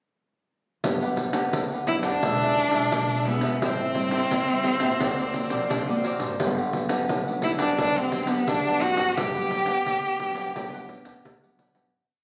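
This short samba and choro piece has a joyful, sunny mood, opening in a straight 4/4 feel at 0.8 seconds. Up front, a jingly pandeiro drives the groove while a crisp, picked cavaquinho strums in sixteenths and a fingerpicked classical nylon-string guitar sits in the background, playing thumb bass and syncopated plucked chords. Beneath them, a woody, thumpy upright bass with gut strings plays a pizzicato samba bass figure. At 1.9 seconds a clear, focused cello takes the lead from close by: one bowed player with vibrato shaping a motif-based melody in period phrases over chords moving from Gmaj7 through E7b9, Am7 and Daug7. The sound carries a moderate, large reverb and the club-like character of a phone recording made in the room, and the piece fades out from 9.2 seconds.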